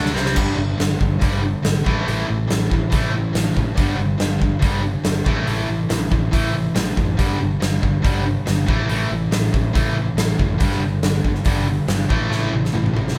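An up-front arena drum kit with a punchy kick, medium-tuned snare and bright cymbals drives this swaggering, anthemic hard rock excerpt at 140 BPM, with fills at 0.0 and 12.3 seconds, while an overdriven cranked stack guitar and a high-gain distorted guitar pick out a riff moving between G5 and A5 over a growly, amped electric bass, the band heard playing live together in a moderate stone-room reverb.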